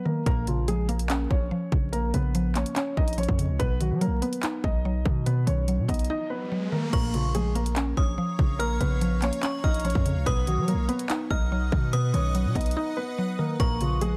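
Dark and cold, this short drill hip hop cut moves at 144 BPM in a half-time feel in Bb phrygian, where a mellow, muffled baby grand piano carries the melody over a woody, chorused mallet-like synth pluck, a punchy, heavy 808-style bass and an up-front electronic drum kit of hard-clipped kick, bright hi-hats, handclaps and crash cymbal, before a short riser at 6.2 seconds leads into a ringing, inharmonic FM bell line with delay at 6.9 seconds and a blurred, evolving granular cloud pad joining at 8.0 seconds, all inside a dense, heavily limited master dusted with vinyl crackle.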